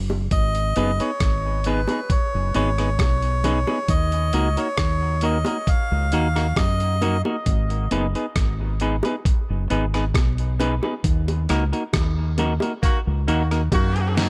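A slow, straight 67 BPM dub reggae groove in G# dorian, deep and meditative, rides a gritty sampler-style kit with thumpy kick and fat snare alongside a round, punchy fingered bass up front, while soft-handed bongos with dub echo sit in the background, a semi-hollow guitar adds a dark, clean fingered accompaniment with vibrato and echo, a reedy, breathy melodica carries the melody until 7.2 seconds, and a smooth-topped horn section enters at 12.8 seconds during the closing band accent, just ahead of the drum fill that ends this cut from a longer piece.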